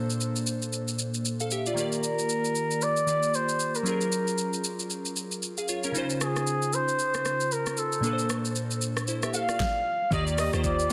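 Glassy, detuned digital keys with chorus open this relaxed, soulful amapiano excerpt, laying lush major-ninth chords up front as a smooth electronic R&B kit joins with a knocking kick, a fat snare with soft clipping, rim clicks, shaker and warm hats. At 1.8 seconds a veiled, distant trumpet with a bucket mute enters with a classical-style solo melody carried on delay. At 10.1 seconds a deep, round, dark log drum bass arrives just before the cut, all under light reverb and a dense, heavily limited modern master.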